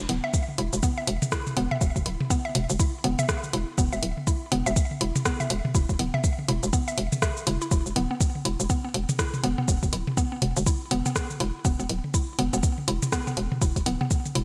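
Bright, lightly reverberant 1980s-style digital sound frames this cool, quirky minimal techno fragment at 122 BPM with 60% swing on the 16ths, where a hollow, bouncy FM bass knocks up front beneath a woody, round mallet-like synth pluck riff dressed in chorus and delay, both sidechain-pumping alongside a soft, up-front electronic kick, while a punchy analog drum machine's hi-hat, rim click and shaker and tape-warm electronic toms sit in gated reverb.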